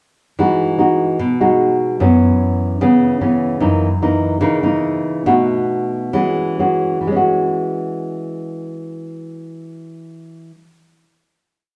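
A thumb-plucked nylon-string guitar, up front in a large reverberant studio, plays a short, romantic and sunny solo bossa nova piece in E major at around 126-148 BPM, with thumb bass under syncopated plucked chords moving from Emaj9 through F#7sus4, F#6 and B7, slowing from 3.6 seconds before settling on an E69 final chord held from 7.0 seconds to the end.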